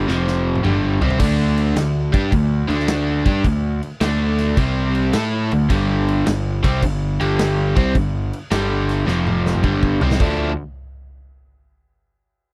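Gritty and heavy, this short cut from a longer blues rock and southern rock power-trio track swings hard as a double-tracked, overdriven electric guitar riff moves between F5, G5, D5 and C5 power chords before landing on D minor. A dark, round fuzz bass sits up front beside the bright, picked guitar, while a big-room acoustic kit with a punchy kick, medium-tuned snare and bright cymbals drives the groove and rolls through drum fills at 0.1 and 9.1 seconds. The sound is dry and close in a 1970s-style studio manner, with light reverb and a faint mains hum beneath the band.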